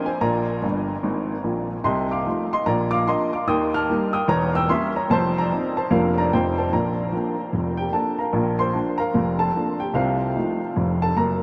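A warm, woody upright piano carries this short stride jazz passage alone, sounding natural and up front, with long sustain ringing out. The mood is exuberant and playful, moving at 148 BPM in 4/4 with a light swing on the eighth notes, in Bb major. The piano ranges from E1 up to F6, opening with a fill between 0.6 and 1.9 seconds before cycling through changes such as Bb, F7/C, Eb, Edim7 and back home to Bb. A new section arrives at 8.3 seconds and runs until the clip ends at 11.4 seconds, landing on F7/C along the way. A huge, wet ambient reverb places the playing in a vast, echoing space, and the clip is cut from a longer piece.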